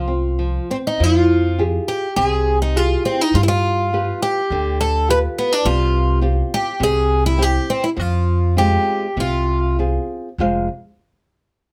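Passionate and mournful, this fado-style ballad moves with a free, rubato feel in 4/4. A picked twelve-string acoustic guitar carries the melody up front, its octave-doubled tone shimmering over old strings until it stops at 9.8 s. Beneath it, a fingerpicked flamenco guitar supplies the accompaniment across a broad range, sounding woody and sitting further back in the mix. An upright bass, also up front, anchors the low end with dark, thumpy pizzicato on gut strings. The harmony drifts from Fmadd9 through G7, Csus4 and C before settling on Fm, and a new section begins at 10.4 s just before this fragment of a longer piece breaks off. Light reverb lends the recording a gentle sense of space.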